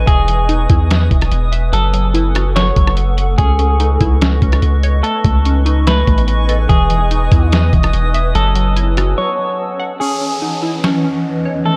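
A deep, sine-toned 808-style bass sits up front in this melancholic, ethereal stretch of atmospheric cloud-rap, carrying a half-time feel beside a muffled, overdriven lo-fi sampler-style kit with a thumpy kick, medium-tuned snare, rim click and hi-hat. A cloudy, granular pad holds sustained seventh and ninth chords with sidechain pumping, while a glassy, detuned wavetable pluck runs arpeggios through chorus and delay, and a clean hollow-body electric guitar plays a dark melody coloured by harmonic tremolo. The bass drops out at 9.1 seconds for a brief break, and an electronic downlifter enters at 10.0 seconds inside the dark digital ambience.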